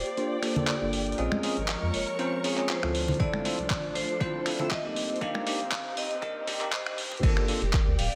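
A swung 16th-note deep house groove at 119 BPM in 4/4 carries this smooth, G minor fragment of a longer piece, with chords moving from Gm7 through Bbm7, Dm7 and Cm7 before returning to Gm7. A gritty, compressed sampler-style soul drum kit sits up front with hi-hat, finger snaps, handclaps and crash cymbal, while small-room congas add acoustic colour. A punchy, layered electronic kick arrives at 3.2 seconds and becomes the loudest element. Underneath, a round, dark analog bass holds the low end with sidechain pumping, and a bell-like tine electric piano plays clean stabs through a lush chorus, with a filter sweep on it shaping the build-up. A metallic, ringing vibraphone carries the melody with fast motor vibrato and tape echo, and an airy, breathy pad and an expressive, bowed string section sit in the background with their own sidechain pumping. The whole mix rests in a lush hall reverb, and the mood stays warm throughout.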